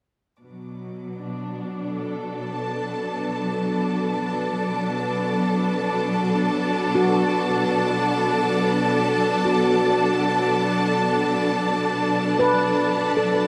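In free time, this reflective, spacious ambient fragment in B minor rests on a lush, up-front symphonic string section bowing sustained Bm7 chords with expressive vibrato, while a reedy, gut-toned chamber violin section slowly fades in behind it, a mellow sawtooth analog drone with pulse-width modulation and chorus hums very quietly from 2.5 seconds, and a ringing, band-limited handpan played with soft fingertips enters at 7.0 seconds with delayed arpeggios, all bathed in a long, wet shimmer reverb.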